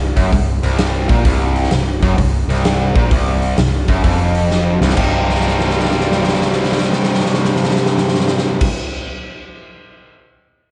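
A swung 4/4 groove at 129 BPM drives this heavy, brooding clip of blues rock and southern rock in C minor, cut from a longer piece. An overdriven, picked, double-tracked electric guitar plays the riff up front with spring reverb and slapback echo, over a dark, round, foam-muted fingered bass and a huge acoustic arena kit with a punchy kick, medium-tuned snare and bright cymbals that adds drum fills. The harmony moves from F#maj7#11/B# to Cm7 at 5.0 seconds, and after guitar and bass stop around 8.7 seconds the drums carry on to 10.2 seconds, all in a big arena sound with a lush hall reverb.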